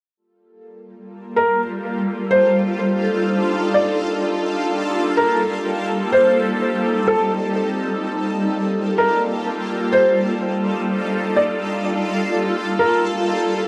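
Floating in free time, this hazy, spacious hip hop fragment is cut from a longer piece and set in a huge ambient reverb with a dark production. A glittering, detuned pad with a granular, ethereal sheen sits up front from 1.1 seconds, sustaining chords through chorus, phaser and its own reverb as the harmony drifts among Gm9, F13 and Am7b5. Just after, at 1.4 seconds, a felt-muted upright piano traces a soft, intimate melody with a mellow, delayed tone until 13.0 seconds.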